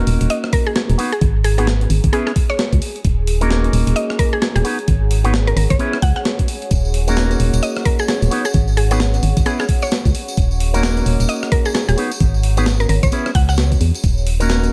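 Late-night and soulful, this two-step UK garage excerpt pairs a hollow, organ-like FM bass with sidechain pumping and an up-front knocking electronic kick beneath gritty, compressed breakbeat drums with hi-hat, rim click and snare. Over these sit bright twangy stabs from an envelope-filtered electric guitar with tape echo and a woody, round synth pluck melody with chorus and tape echo, while a deep, moody pad with chorus and pumping drifts low in the mix and a jingly vintage tambourine enters at 6.7 seconds over a looping Ebm7–Abm7–Dbm7 progression.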